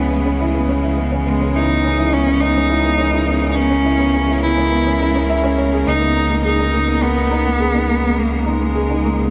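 Piano and strings electronica at 104 BPM in C# dorian, moving and intimate, where a clear, up-front bowed cello sings the melody through digital delay over a felt-muted upright piano riff with audible action noise and the same delay, sustained chamber chords from a string quartet with light vibrato, and a round, deep analog bass on C#2, all set in a small room with light reverb and some lossy compression artefacts as C#m7 gives way to G#madd9/C# at 5.9 seconds in this 9.3-second excerpt cut from a longer piece.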